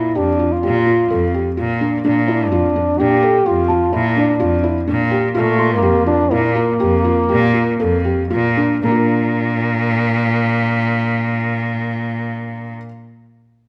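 Moving in a straight 7/4 at 115-128 BPM in Bb lydian, this shimmering, hopeful piece of contemporary chamber music, cut from a longer work, sets a nasal, straight-muted French horn melody up front against thick-felted upright piano arpeggios with audible action noise and a biting, bowed cello bass line, while a bell-like celesta enters in the background at 3.7 seconds, the tempo slows from 4.9 to 8.8 seconds, the horn stops at 8.3 seconds shortly before a new section begins at 8.8 seconds, and a moderate recital hall reverb surrounds the ensemble.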